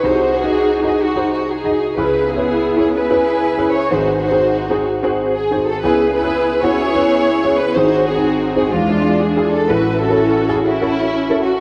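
Fervent and soulful, this swung gospel excerpt sets a close, intimate studio string section carrying the melody with soft-attack sul tasto bowing, vibrato, a smooth top and a touch of delay over a worn, deep-bassed concert grand piano accompaniment colored by ensemble chorus, both up front as the harmony rocks between G#7 and C#m7 before passing through E7b9 to settle on A6, all bathed in a dreamy, reverb-soaked plate haze.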